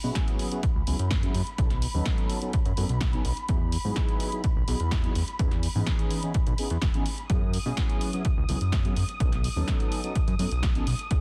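A dense, heavily limited modern master with little reverb carries this short cut from a longer piece of filtered disco house, funky and groovy at 126 BPM in a straight 4/4. An up-front electronic kick and a punchy analog drum machine supplying hi-hat and snare arrive at 0.2 s, both carrying the roominess of a large space, while a close, dry tambourine sits barely audible beneath them. A fat, saturated analog bass built from detuned sawtooths anchors the low end with a plucky filtered attack. A mellow synth brass, round and dark with chorus, phaser and a ring-modulated edge, fills the middle as accompaniment. High above, a lush symphonic violin section holds bowed sustained chords with vibrato, a soft attack and a smooth top. The bass, brass and strings share sidechain pumping and a low-pass filter, with a filter sweep running the whole 11.2 seconds over a cycle of F#7sus4, B7, Emaj7 and C#m9/E.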